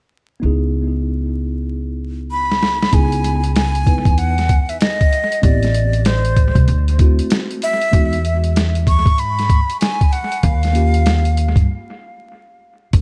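Mellow and nocturnal, this jazz-hop excerpt in C# minor moves at 96 BPM with a swung sixteenth-note feel. A worn, slightly out-of-tune tine electric piano with analog delay and a woody, dark pizzicato upright bass open over C#m9. A breathy jazz flute with vibrato and a soft attack takes the melody through chords like Am7, D9 and E, and a gritty, pitched-down boom bap drum kit with a thumpy kick enters at 2.5 seconds during a short fill; from 11.7 seconds a break leaves the bass and drums in a small, echo-heavy room laced with vinyl crackle.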